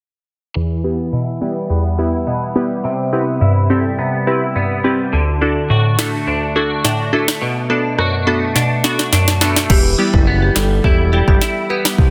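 Hypnotic and bouncy, this dancehall excerpt moves at 105 BPM in a straight 4/4 feel in E minor, cycling through Em, Cmaj7, Dadd9 and Bm7 before returning to Em. From 0.6 seconds a glassy wavetable pluck, crystalline and up front with chorus and a low-pass filter, carries the accompaniment alongside a clean, twangy electric guitar playing arpeggios through an ensemble chorus, while a filter sweep runs across the opening stretch. An afro-pop drum kit arrives at 6.0 seconds with a deep kick, sharp snare, rim clicks and crash cymbal, and a drum fill leads into the next section. At 9.7 seconds a fat, detuned sawtooth bass drops in low and up front, joined by a marimba with medium mallets playing a short melody. Light reverb surrounds the parts, and the mix is dense and heavily limited in a modern style.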